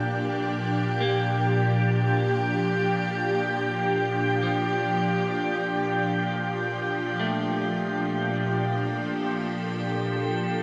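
An evolving wavetable pad, bright and up front, opens this ambient excerpt with sustained, morphing detuned chords colored by ensemble chorus, phaser and its own reverb, while a drifting glass-harmonics texture floats above with calm, glassy overtones. From 1.0 seconds a clean, picked electric guitar fades in from the background, playing delayed arpeggios until 9.5 seconds. A shimmer reverb with a 7.8-second decay wraps the music in a weightless, warm haze.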